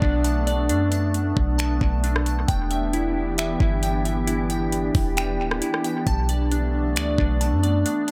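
Hazy and melancholic, this short atmospheric cloud-rap excerpt in a half-time feel sets an ethereal FM pad's slow-blooming sustained chords, with ensemble chorus and reverb pumping against the beat, beneath chorused, dub-echoed arpeggios on glassy digital keys with a filter sweep, while a deep, boomy 808-style bass and a smooth R&B kit of knocking kick, metallic hats, finger snaps and rim clicks sit up front, a very quiet downlifter sounds through the first 2.5 s, and the chords move from Bm7 to Em7 and back in an echo-heavy, otherwise dry mix.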